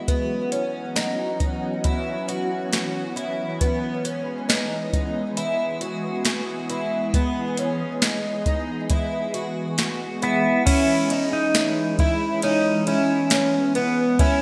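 Bathed in a lush hall reverb with a bright 1980s-style digital sheen, this ethereal, blissful dream pop excerpt drifts at 68 BPM in 4/4 over F#7sus4 and C#m7/E chords. A silky, slow-attack string machine with phaser and ensemble chorus holds sustained chords beneath a shimmering, octave-doubled twelve-string acoustic guitar picking boxy arpeggios through chorus and delay, while a soft vintage rhythm box adds a deep kick, crisp snare, metallic hats, tambourine and cymbals in gated reverb. At 10.2 seconds a clean, compressed pedal steel guitar enters with a fingerpicked, sliding melody and volume swells, and the harmony settles on C#m at 10.7 seconds.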